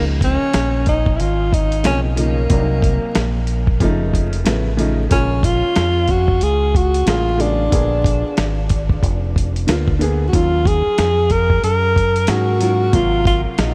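This relaxed, smooth jazz-hop excerpt opens with a breathy tenor saxophone carrying the melody up front, its mellow subtone, scooped notes and vibrato trailed by analog delay, over a woody, boxy upright piano and a dark, round fingered electric bass. At 0.2 seconds a dusty, gritty, compressed sampler-style drum kit enters with a thumpy kick, medium-tuned snare and hi-hat in a swung groove, while the harmony moves through rich jazz chords from Db69 to Ab13. Light reverb and vinyl crackle give the short cut from a longer piece a lived-in, sampled feel.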